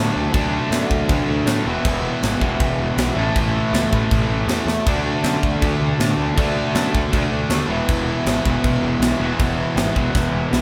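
A straight 4/4 pulse at 159 BPM drives this short, rebellious and upbeat punk rock cut in E mixolydian, tuned to A4 = 439 Hz. Three picked electric guitars play riffs from the first moment: one bright and overdriven, a second distorted, double-tracked and set in the background, and a sludgy overdriven guitar that also sits in the background with a warm tone. Underneath, a picked electric bass with fuzz and overdrive adds a growly, punchy low end. A tight metal drum kit enters at 0.3 seconds, up front, gritty and polished, with bright cymbals, a medium-tuned snare and a tight kick, and it plays fills at 4.7 seconds and again near the end. The chords move through D, E and A before returning to D and E, and the band sounds as if playing live in one room with light reverb, cut from a longer piece.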